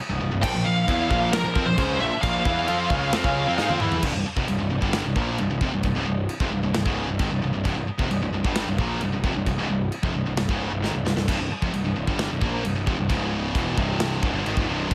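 This small-room recording puts an acoustic drum kit up front, its punchy kick, medium-tuned snare, toms, crash and china cymbals ringing through a pumping studio room sound. This heavy, epic metal passage, cut from a longer piece, rides a straight 4/4 over stacked high-gain guitar riffs. Two bright, picked rhythm parts sit in the background, one of them playing only until 4.0 seconds, while a double-tracked third part stays very quiet throughout. Beneath them a picked electric bass with fuzz and overdrive gives the low end a growly edge. A warm, distorted lead guitar with delay carries a melody up front in the opening section and falls silent at 3.8 seconds, while a drum fill leads into the second section. Another fill arrives near 10.8 seconds, and the harmony moves from Bb5 to C5 before touching Db5 and landing on C.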